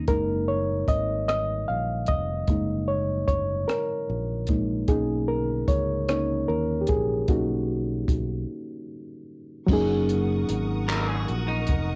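A reedy, worn and slightly out-of-tune electric piano leads this sensual, intimate slow R&B piece in 6/8 at 50 BPM in F# major, playing up front through built-in speakers with cassette-tape colour, moving from F#6 to Bmaj9 before a break at 8.5 seconds. A round, punchy fingered electric bass and a compact cocktail drum kit with dark cymbals, handclaps, rim clicks and a rolled-off top hold the groove in a small, lightly reverberant room. At 9.7 seconds a lush, distant bowed string section enters with vibrato, and a slightly broken-up, compressed electric guitar, heard briefly at the very start, returns with a picked second line from 10.9 seconds in this short cut from a longer home cassette recording.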